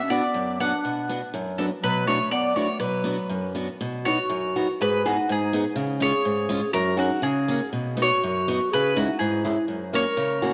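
This jolly, festive alpine folk dance-band excerpt opens with a woody, doubled-string mandolin carrying the melody up front, a dark clarinet playing a second line, and a picked steel-string acoustic guitar accompanying. The tune moves at 123 BPM in 2/4 with a loose, rubato feel. It begins in B minor and turns to B major at 3.8 s, then moves through G#m, C#, F#, B and C#m before settling back on F#. The mandolin's tape echo adds repeats to its sparkling picked notes, while the clarinet sits distant and roomy, played in a classical style. The guitar is crisp and close, with audible finger squeaks, and the whole performance is bathed in a wet echo-chamber reverb with a long, lingering tail.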